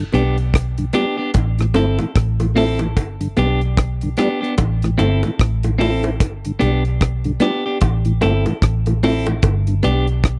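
A mellow tonewheel organ and a round, foam-muted electric bass open this sunny, laid-back roots reggae piece, cut from a longer performance. The organ carries chorus vibrato, a slow rotary speaker and tube saturation, while the bass sits up front in a low register. A deep reggae drum kit with a tight kick, hi-hat and rim click, plus high-tuned bongos struck with hard hands, come in at 0.1 seconds. A twangy, compressed clean electric guitar enters at the same moment, its picked tone bathed in spring reverb and dub echo. The groove moves at 74 BPM in 4/4 with a swung sixteenth-note feel in G major, rocking between G and Am throughout. The sound is dry and close, in the manner of a 1970s studio recording.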